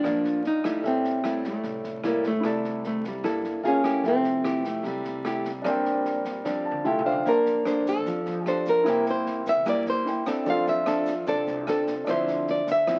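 Romantic and sophisticated, this bossa nova excerpt moves at 150 BPM in a straight 4/4, centered on F major. An up-front, fingerpicked nylon-string guitar carries the classical-toned melody, while a second, darker fingerpicked nylon-string guitar supplies accompaniment beneath it, joined by a baby grand piano with long sustain and a woody, growly pizzicato upright bass sitting in the background. A polished, airy big-band drum kit with a punchy kick, medium-tuned snare, rim clicks and toms drives the groove, and at 6.4 seconds the drums and piano share a fill that leads into a new section at 7.3 seconds, where a grainy, bright tube shaker enters very quietly. The harmony is lush and jazzy, moving through chords such as Ebmaj9, Am7, C13 and Gbmaj9 before settling on Fmaj9, Bbmaj9, C7, F6 and Dm9. A modest small-room reverb and the crackle of a very old 78 rpm record give the whole piece a vintage, intimate sheen.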